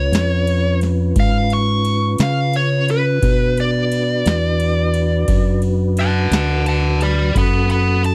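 A smooth overdriven lead guitar takes a mournful, soulful solo up front in this slow 12/8 blues fragment, over the round, punchy fingered bass, a soft flute-like tonewheel organ holding chords through a slow rotary speaker, and a booming analog drum machine with deep kick, crisp snare and ride, all set in a dry, close 1970s-style studio sound as the chords move from C#7 to Bm and then F#m at 7.4 seconds.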